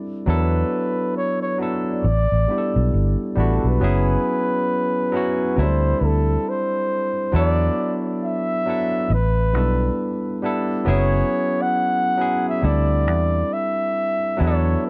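Swung sixteenths at a slow 68 BPM in 4/4 carry this sultry, introspective neo-soul R&B excerpt in F# phrygian, where a barky, lightly overdriven tine electric piano sounds alone at 0.0 s before a dark, breathy flugelhorn with scooped notes and a whispered, intimate tone joins at 0.3 s alongside a round, foam-muted vintage electric bass sitting prominently in the mix, all set in a small room over sus4 ninth chords cycling through E, A, F# and D.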